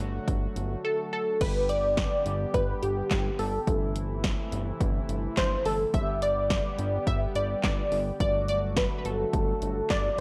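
An upbeat, bright synth-pop excerpt with light reverb, moving at 106 BPM in a straight 4/4 feel in G major. A brassy analog pad with chorus holds sustained chords from the start, its detuned sawtooth tone evolving under a filter sweep and gentle vibrato, while a fat analog bass anchors the low end on G with a thick, mellow sawtooth-and-square blend touched by ring modulation. An electronic house drum kit enters at 0.3 seconds, up front and layered, with a punchy kick and snare, handclaps, hi-hat, crash cymbal and gated reverb. At 0.8 seconds a funky polysynth comp takes the melody between G4 and E5, its dark, detuned sawtooth tone shaped by a filter pluck, a moving notch and chorus, sitting forward in the mix. The harmony rests over a G pedal, moving through D/G, G, Am/G and back toward D/G.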